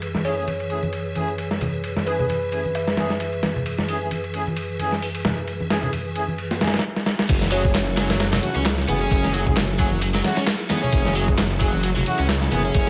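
A swung 132 BPM breakbeat groove in F# minor drives this energetic, raw excerpt. Gritty, up-front sampler-style drums with a thumpy kick are joined by layered electronic tambourine and handclaps and bright background congas, while a piping tonewheel organ holds an F#m9 chord through fast rotary speaker and sidechain pumping. A clear brass ensemble stabs through tape echo, and a woody, buzzing kalimba melody sounds through a telephone filter from 0.2 seconds. After a drum fill, the drop at 7.3 seconds brings in a thick, menacing detuned saw bass, followed at 7.5 seconds by a double-tracked overdriven electric guitar riff, all set in light digital ambience.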